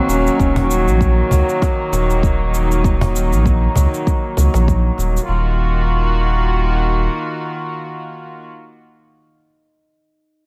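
A lightly swung groove from a deep, layered electronic kick, a produced shaker and a snappy cajon sitting in the background drives this mystical, meditative organic downtempo excerpt from a longer piece. A round sine sub bass pumps up front alongside a bowed string section with a reedy gut-string tone, which carries sustained chords through a filter sweep until 5.3 seconds and holds on to 8.5 seconds. A dark duduk phrase with vibrato and scooped notes appears only in the first 0.7 seconds, while a ringing bronze singing bowl, struck with a felt mallet, shimmers barely audibly beneath the light studio reverb.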